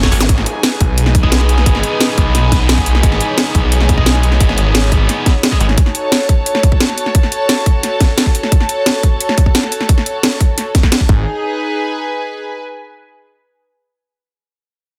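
Straight 4/4 drum and bass drives this dark, mechanical and aggressive technical cut, opening on a drum fill as an overdriven, up-front electronic kick and a layered kit of cracking snare, bright hi-hats and shaker pound along, while a snarling, detuned sawtooth bass growls until 5.8 s under compressed, double-tracked fuzz guitar stabs that end at 5.7 s, and distant, floating bowed strings pump beneath through 12.6 s in a dense, heavily limited master.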